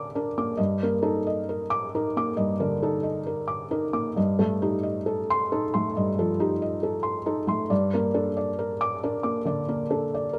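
A felt-muted upright piano carries this short passage entirely on its own, its thick felt giving each note a soft, mellow tone with a short sustain that sits close and up front. The piece is neoclassical minimalist piano in G minor, moving at a slow 68 BPM in 4/4 with a rubato feel that lets the time breathe. The mood is intimate and wistful, the piano ranging from G2 up to D6 over a light reverb. The harmony opens on G minor, shifts to Ebmaj7 over G at 0.6 seconds, moves to F7 over G at 4.2 seconds, and returns to G minor near the close. Tuned to A4 = 438 Hz, this brief fragment is cut from a longer piece and lasts about ten seconds.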